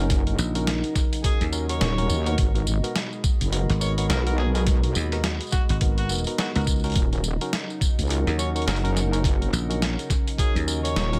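A dry excerpt of gritty, playful glitch hop at 105 BPM in Eb minor, swung on the sixteenths, moving from Ebm7 to Abm7 at 2.4 seconds and back at 7.0 seconds. Up front sit a thumpy, pitched-down electronic kick, a heavy, saturated wobble bass with chorus, and a bright, growly thumbed slap bass, while a compressed sampler-style kit adds a medium-tuned snare, hi-hat and tambourine. A very quiet detuned analog pad holds sustained chords, a lo-fi pad warbles in the background with chorus, reverb and sidechain pumping, and worn, slightly out-of-tune electric piano stabs carry 12-bit grit, delay and pumping, all beneath a mellow jazz-style harmonica solo with vibrato, scooped notes and its own grit and delay that enters at 1.2 seconds.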